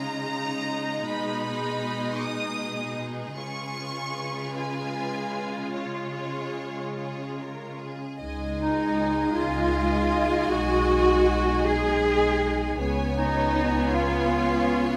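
Cinematic orchestral film score in a slow, rubato 6/8 at 48-54 BPM, moving and hopeful in Db mixolydian, cut from a longer piece. Lush bowed strings carry it from the start: a clear, distant violin section sings the intense vibrato melody over a bright second violin line, smooth viola accompaniment and dark, woody cellos that sit up front. At 8.2 seconds the phrase repeats as horns add warm sustained chords and focused double basses deepen the bass, with a soft-attack clarinet joining the second line at 8.6 seconds, all in a scoring-stage reverb.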